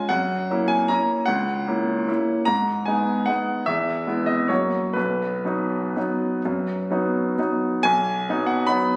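Swaying in a rubato 3/4, this playful, elegant classical piano waltz, cut from a longer piece, features a clear, intimate baby grand playing solo and up front, its audible action noise and long sustain ringing from B1 to B5 through a moderate recital hall reverb, with chords moving from F#7 through G#m, E and F# to settle on B at 5.0 seconds.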